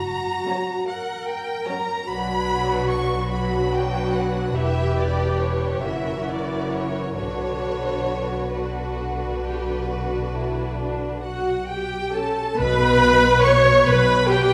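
Swaying in a rubato 12/8, this yearning, elegiac slow movement for chamber string orchestra is cut from a longer piece, its violins carrying a close, expressive melody with soft attacks and vibrato while a second violin line and the rich, smooth violas join at 0.5 seconds. Dark, intimate cellos and distant, even double basses hold the bass beneath, and the whole ensemble is heard from further back on a reverberant scoring stage. At 12.6 seconds a new section begins as the harmony settles onto a bare B5.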